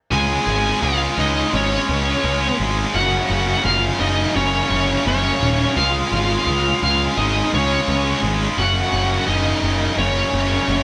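A smooth, overdriven lead guitar carries the melody through this heavy, dark metal excerpt, with a second overdriven guitar playing its own quieter supporting line an octave lower. Underneath, two scooped, high-gain guitars grind out a distorted, picked riff, one up front and the other sitting back in the mix. A punchy fuzz bass, overdriven and direct, stands forward with real bite. At a steady 85 BPM in straight 4/4, the band moves between Db5 and Gb5 chords, with every part playing together from 0.1 to 10.8 seconds. The whole group sounds like it is playing live in one room, wrapped in a moderate stone-room reverb that gives the dense wall of tone a hard, echoing edge.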